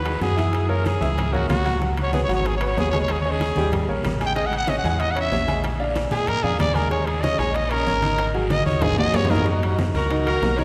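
Salsa at a driving, passionate 188 BPM, this excerpt puts a growling, gritty trumpet solo up front over a clear, worn baby grand piano with audible action noise, a punchy, round fingered electric bass, background congas with a thin, bright skin, ringing metal-shell timbales, very quiet dry bongos and a raspy guiro, with a drum fill at 8.5 seconds leading into a warm horn section that enters at 9.3 seconds, set in a reverberant concert hall.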